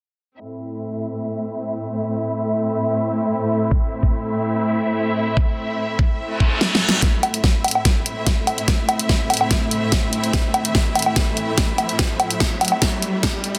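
A half-time 4/4 pulse drives this chaotic, aggressive heavy wobble dubstep excerpt, which opens on a lush, bowed symphonic string section holding an A minor chord with vibrato, pumped by sidechain and swept through a low-pass filter. A knocking, up-front electronic kick enters at 3.7 seconds, and a reverse cymbal and riser arrive at 6.3 seconds. At 6.6 seconds a layered dubstep kit joins with a fill of hi-hat, a huge snare and woodblock, all high-pass filtered, launching a build-up, all set in moderate plate reverb within a dense, heavily limited master.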